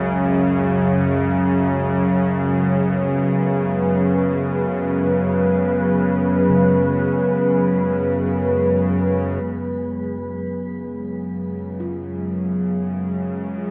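In free time, this cavernous, desolate ambient excerpt, tuned to A4 = 436 Hz, rests on a deep, moody pad sustaining an F#sus2 chord with chorus and a shimmering reverb, over a tense, string-like bowed drone with vibrato, while mellow, round gamelan-type bossed gongs play soft arpeggios through analog delay in the background, a synth drone fades in from 9.4 s as a very quiet, ringing bronze singing bowl enters, and a wet spring reverb gives the whole mix its echo-heavy depth.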